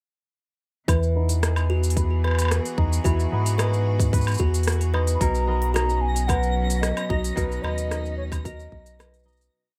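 Lightly reverberant and tape-tinged, this short, pastoral folktronica piece moves at 111 BPM in B major, with a round sine sub bass, a soft electronic kick and a small-room found-sound kit of crisp hats, rim clicks, shaker and woodblock setting a straight groove over Emaj7 and then Bmaj7. A fingerpicked, ringing kora plays sparse arpeggios under a filter sweep, while a bright, slightly out-of-tune music box loops a five-step figure that drifts against the bar, and a distant string quartet holds slowly shifting bowed chords with vibrato. At 5.1 seconds a pure, woody baroque flute enters with a mellow motif-based melody, from 5.6 seconds a sparkling granular shimmer adds a held high note in the background, and the whole piece fades out from 6.7 seconds.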